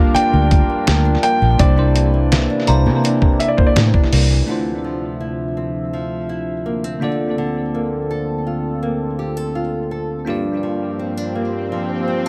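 A straight, unhurried four-beat groove opens this contemporary R&B excerpt. It comes from a gritty, compressed sampler-style drum kit, with a thumpy kick, fat snare and hi-hat, and a round, foam-muted electric bass, both sitting up front. Over them, a grand piano sings a brief melody trailed by tape echo that ends at 3.8 seconds, while a crystalline FM synth bell glints in the background through chorus and phaser. The drums and bass fall away near 4.4 seconds, and the synth bell fades soon after at 4.7 seconds. That leaves a bright, bell-like tine electric piano coloured by phaser and echo, a small-sounding fingerpicked nylon-string guitar playing arpeggios, and a smooth, warbling analog pad holding sustained chords. The harmony moves through minor-ninth and major-seventh shades, an electronic swell arrives at 11.1 seconds, and the echo-heavy mix with light reverb leaves a longing, sensual mood.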